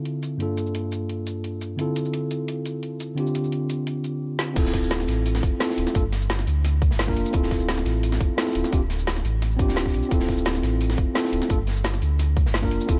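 Straight 4/4 liquid drum and bass rhythm, rolling and lush, opens with a mellow tine electric piano playing Gm9 and Dm9 chords up front over a filter-swept drum and bass kit of woody snare, metallic hats, shaker and crash. After a drum fill at 4.4 seconds, the drop at 4.6 seconds brings in a deep, sustained sine sub bass with octave, a tight electronic kick and a gritty, saturated breakbeat kit sitting in the background, all within a dark, dry production.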